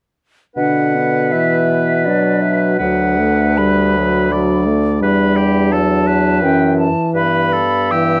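A moderate studio reverb and a dark, warm production frame this brief passage, cut from a slow, romantic classical movement for wind quintet in B minor. At 82 BPM in 3/4, the beats fall unevenly and the rubato gives the music a yearning, solemn air as the harmony moves from B minor toward E minor. The silver concert flute carries the melody with a pure, metallic tone, vibrato and a soft attack, while the oboe sings a clear second line with light vibrato and a smooth top. Beneath them, the French horn and a present clarinet fill out the accompaniment, and an up-front bassoon with light vibrato anchors the bass. The five winds play together from 0.6 to 8.2 seconds.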